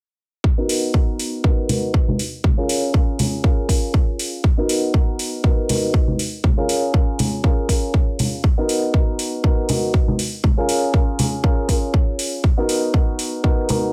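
Sensual and groovy, this filtered disco house excerpt at 120 BPM with a light 16th-note swing sets a punchy, up-front electronic kick beside metallic hats pumping under sidechain, against ringing hard-hand shaker and congas, while a dark, mellow baby grand piano with phaser, 12-bit sampler grit and a low-pass filter rocks between Bmaj7 and A#m7 from 0.6 seconds, all wrapped in a small room and a filter sweep running to 13.9 seconds.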